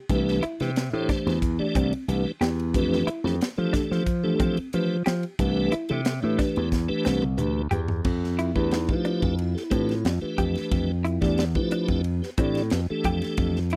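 This funky, soaring stretch of electric jazz fusion, cut from a longer piece, opens on clean, picked stabs from a semi-hollow electric guitar, hollow-bodied and compressed under a lush chorus, with the rest of the band joining almost at once at a straight 90 BPM in 4/4. A tonewheel organ supplies the accompaniment with a piping, scooped tone, audible key click, chorus vibrato and a slow rotary speaker, sitting up front in the mix. Underneath, a bright, punchy slap bass comes through direct and amped, anchoring the harmony as it moves from Cmaj9 to F69 and C69 in the F lydian setting. The crisp fusion drum kit sounds airy and polished, with bright cymbals, a high-tuned snare and a punchy kick, and it plays a fill from 6.7 to 8.1 seconds that leads into a new section settling on Fmaj9#11. The dry, close production recalls a 1970s studio, keeping every part immediate with little reverb.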